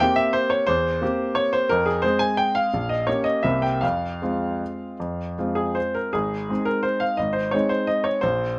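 Close, detailed microphones and a light reverb place a clear baby grand piano up front, intimate and natural, with its action noise audible beneath the notes. This short solo piano waltz in F minor is cut from a longer piece, moving in 3/4 at roughly 151 to 185 BPM with a freely breathing rubato. The mood is bittersweet and elegant as the harmony circles from C7 to Fm, touches a Gdim/Bb, and returns through C7 to Fm. The playing spans Ab1 to Ab5, from a deep bass register to the upper treble. At 6.2 s a new passage begins on an Ab chord, and the piano plays on until 8.6 s.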